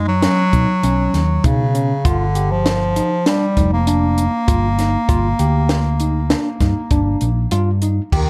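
A dark, warm small-room recording carries this driving, bright progressive instrumental excerpt at 99 BPM in 5/4, where a clear, soft-attacked bass clarinet carries the classical-style melody with delay up front over a worn, slightly out-of-tune tine electric piano playing lightly overdriven, delayed arpeggios, a round, amped hollow-body electric bass, and a compact cocktail drum kit with a high-tuned snare and punchy kick that joins at 0.2 s, all moving from B to Gm.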